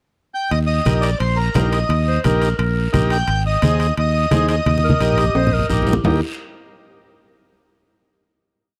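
A reedy, full accordion opens this short, sunny cumbia at 0.3 seconds with a pickup, then carries a motif-based melody of call phrases up front. Fingered electric bass plays a direct, up-front cumbia figure beneath it, alongside low-tuned congas with a bright, thin-skinned tone, ringing metal-shell timbales with bell, and a raspy guiro scraping long and short strokes from a distant, large-room space. A vintage, buzzy combo organ with light vibrato and overdrive adds rhythmic triad chords, and from 2.1 seconds a breathy, vintage clarinet with subtone and vibrato slips jazz-style answering phrases into the accordion's rests. A drum fill beginning at 4.7 seconds leads the joyful groove into a final chord. The dry, close sound has the feel of a small 1970s studio room.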